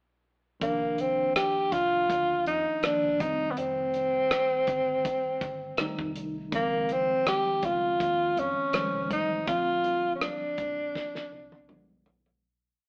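A smooth mid-tempo soul groove at 81 BPM in 4/4 opens this short, complete piece of lush 1970s-style soul, with a gentle swing on the sixteenths and a bittersweet, smooth mood in C dorian. The damped drum kit sits up front, dry and mid-forward, with a fat snare, tight kick, hi-hat, rim click and toms. Underneath it, a dark, foam-muted fingered electric bass sits in the background with a round, punchy tone, carrying a melodic soul line with muted ghost notes, slides and chromatic approach notes. A mellow, clean tine electric piano pushes rootless chords through Cm11, F9, Dbmaj7, Bbmaj7 and G7b9, while a breathy tenor saxophone leads up front with vibrato, scooped notes and jazz-style hook phrases. Bright, distant congas join softly at 6.5 seconds, with a slap on two and open tones on four, before the whole band fades out from 9.5 seconds and the drums close with a fill at 11.0 seconds, all heard through a stone room and an AM radio sound.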